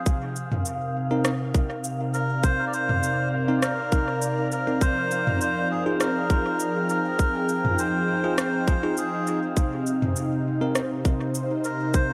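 A reedy, nasal melodica carries the melody in this hazy, spacious ambient dub excerpt, entering at 2.1 seconds and trailing dub echo as it sits up front. Beneath it, a smooth, detuned sawtooth pad holds sustained chords with a soft attack, long release and chorus, its dark tone moving from Cm7 to Fm7 and back. A tight, overdriven electronic kick drives the groove with a gentle swing, joined by an overdriven electronic kit of rim clicks, shaker and toms that also throws dub echoes, both with the character of a small room. Set back in the mix, a bell-like, bright tine electric piano adds clean, direct stabs from 1.1 to 10.8 seconds, echoing in dub fashion. A breathy, wind-like tuned noise layer hovers on a single high pitch in the background with its own built-in reverb, while a moderate concert hall reverb gives the whole a roomy, drifting space.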